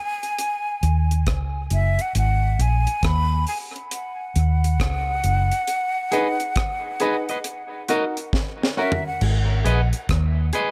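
Light reverb surrounds this deep, hypnotic dub reggae piece in G# minor at 68 BPM with swung sixteenths, where a breathy jazz flute carries the melody between E5 and B5 with vibrato, a soft attack and dub echo over a dry drum kit with a high-tuned snare and tight kick. A dark, round, punchy muted electric bass sits loudest in the mix through the opening break. At 6.1 seconds a bright, clean, picked electric guitar and woody, boxy upright piano stabs arrive, both filtered and echoed, before a drum fill at 8.3 seconds leads back toward G# minor.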